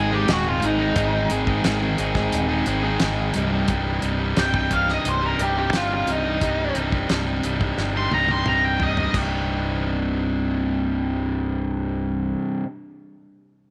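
A dark, fuzz-drenched lead guitar solo opens this gritty, driving classic rock excerpt in C minor at 88 BPM, over a bright, distorted riff guitar up front, a hollow-body overdriven guitar in the background that stops at 3.7 seconds, and a growling, overdriven fingered bass. A dry, mid-forward 70s drum kit with a fat snare and tight kick keeps a straight 4/4 feel, with a drum fill from 7.8 seconds as the solo ends at 9.1 seconds. The harmony moves from Ab to C minor, and light reverb surrounds the parts.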